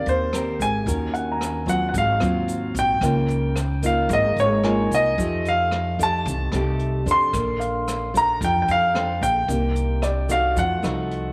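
A sunny, relaxed bossa nova excerpt in which a clear, intimate baby grand piano carries the melody up front over a full-bodied, fingerpicked nylon-string guitar, a background grand piano with audible action noise, a woody pizzicato upright bass, a distant brushed drum kit with a boomy kick and rim clicks, and a grainy egg shaker, all set in a moderate spring reverb as the chords move from Abmaj9 through Db69 and Bbmaj9 to F7b9.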